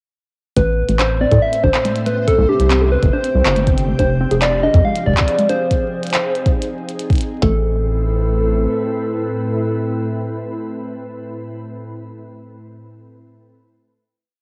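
A home cassette recording with moderate spring reverb and digital ambience gives this melancholic, eerie IDM piece a hazy, lo-fi sheen. A glitchy electronic kit enters at 0.6 seconds: a deep kick and tiny snare play a broken pattern, while clicky, glitched closed hats and handclaps keep the beat ever-changing, all roughened by cassette tape. A rubbery, hollow square bass sits up front with a dark, bouncy syncopated riff. Behind it, a warbling, detuned pluck loops a 14-step arpeggio that drifts against the bar, under a filter sweep until 5.7 seconds. A glassy, ethereal FM pad holds slowly shifting chords, from Amadd9 through Csus2, Fmadd9 and G#, with a very quiet, flickering granular texture holding one high note. A round, gentle, keys-like lead with a sub octave sings bright motif-based phrases through chorus and tape echo, and it stays with the pad on the final Amadd9 chord from 7.4 seconds after the groove falls away.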